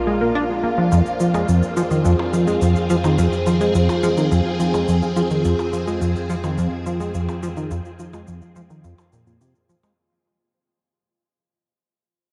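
A swirling, vintage phased string machine holds bright sustained chords over a detuned analog drone and very quiet, round pluck arpeggios, as a punchy, funky analog bass riff with subtle chorus and analog delay sits up front and electronic cabasa and percussion blips join at 0.9 s in this expansive, mysterious 106 BPM sequencer-driven space-music excerpt in F dorian, moving from Bb to Fm under a huge, dark reverb before fading out from 3.9 s.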